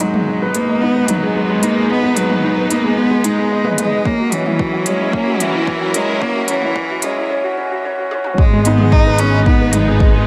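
A close, smooth bowed cello melody with vibrato opens this moving, melancholic piano-and-strings electronica excerpt in G# minor at 111 BPM, joined from the start by a warm, up-front concert grand piano riff, lush, distant string-section chords under sidechain pumping and a low-pass filter, a very quiet, expressive double bass section, and an electronic kit of smooth hats and toms, while a layered deep kick arrives at 4.1 s, both drum parts overdriven, as the build-up takes a short break and falls into the drop at 8.4 s in light small-room ambience.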